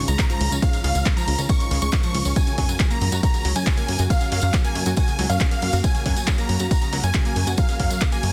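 A straight 4/4 pulse at 138 BPM drives this emotional, bittersweet uplifting trance passage, with a punchy, up-front electronic kick, a layered dance kit of handclaps, hi-hat and ride cymbal in a small room ambience, and a jingly acoustic tambourine in the background. A funky, fast-attack analog bass and a round, chorused analog pluck playing arpeggios both pump with the sidechain beneath a huge, euphoric supersaw lead with tape echo, joined very quietly by a detuned supersaw stab with a filter sweep playing a second line. A shimmering, ethereal pad with slow attack and granular texture sustains chords as the harmony moves from Dbadd9 to Gb at 2.4 seconds, all in a dense, heavily limited modern master with little reverb.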